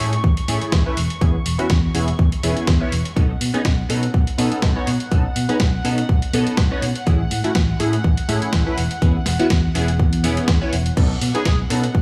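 A gritty, compressed sampler-style kit of hi-hat, medium-tuned snare and crash opens a lightly swung groove, its hats and cymbals pumping, and a punchy electronic kick joins up front a moment later. This funky, sunny slice of filtered disco house is cut from a longer piece. A detuned sawtooth-and-pulse polysynth comps through the chords with a fast attack, chorus, phaser, a moving notch and a cassette-tape haze, all pumping under a low-pass filter. Beneath it, a round, amped fingered electric bass holds the low end, while a distant, reedy string section with gut-string tone and light vibrato sustains chords far in the background through the same filtered pumping. Near the close, at 11.3 seconds, a tight, bright horn section lands a brief note trailed by dub echo. The harmony cycles through Amaj7, E6 and B9, all set in a digital ambience.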